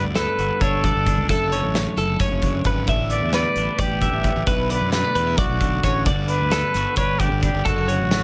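Lightly reverberant and intimate, this wistful, intricate math rock and midwest emo excerpt in D major moves at 264 BPM in eighths in 7/8, with a breathy, whispered trumpet carrying the up-front melody with vibrato and a soft attack over two bright, clean, compressed twelve-string electric guitars (one picking the accompaniment, the other picking twangy high arpeggios) and a fuzz-overdriven fingered bass, while a loose indie drum kit with punchy kick, medium-tuned snare, hi-hat and a pumping room enters at 0.2 s as the chords cycle through Gmaj9, Dmaj9/F#, A9sus4 and Bm11.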